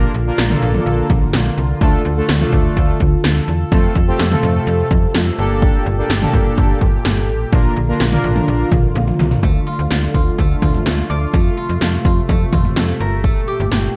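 Fat, detuned analog synth brass and an evolving, resonant sweeping pad, both treated with chorus and shimmer reverb, open this driving, cool synth-pop excerpt in D minor at 126 BPM alongside a snappy, metallic FM slap-style bass and punchy 80s electronic pad drums with a gated snare and toms up front, and after the brass stops at 8.7 seconds and a drum fill follows, a brilliant, plucked harpsichord enters at 9.4 seconds with delayed, shimmering arpeggios over the dark production.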